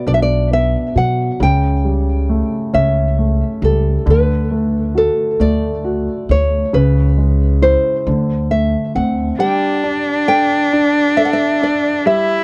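In a slow, straight 6/8 lilt, this melancholic, intimate acoustic folk-pop ballad, cut from a longer piece, sets a dark, fingerpicked classical nylon-string guitar melody with audible finger squeak and a touch of tape echo over a warm concert grand piano accompaniment with deep bass and short sustain. A woody pizzicato upright bass on steel strings holds the low end until 9.3 seconds, and at 9.4 seconds a single bowed cello enters with a clear, focused, boxy tone and vibrato. Every part sits up front in a dry, close 1970s-style studio sound.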